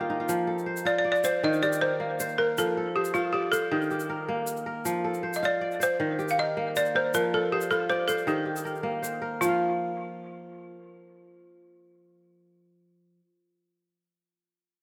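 A bright, ringing kora opens this flowing West African excerpt with a fill at 0.0 seconds, then settles into crisp, fingerpicked arpeggios in 12/8 as the harmony sways between F and E-flat. A grainy egg shaker sits close until 9.6 seconds, while an up-front balafon played with hard rubber mallets carries the melody in a woody, buzzing voice trailed by a diffuse ambient delay. The mix is dreamy and soaked in a long plate reverb.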